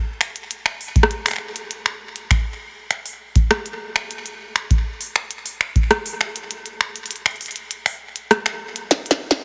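A playful, glitchy IDM passage opens with an up-front electronic drum kit of finger snaps, clicky hi-hats, rim clicks and a tiny snare, all overdriven and treated with studio reverb and digital delay, with soft clipping on the snare. A deep analog-style electronic kick with its own studio reverb joins at 1.0 seconds and stops at 5.9 seconds, leaving the kit to close the excerpt with a drum fill at 8.9 seconds. The sound sits in a light digital ambience under a dense, heavily limited modern master.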